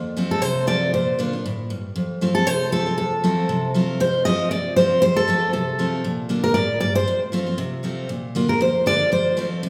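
A picked dreadnought guitar carries the bright melody from 0.3 s, with audible finger squeak, over a second up-front dreadnought picking out a full-bodied accompaniment on fresh strings. This short bluegrass excerpt in F major races along at 235 BPM in 4/4 with a light swing, moving between F and Bb chords with a rustic, joyful spirit. The pair sits in the lingering reverb of a church or concert hall, which lends the quick picking an airy glow.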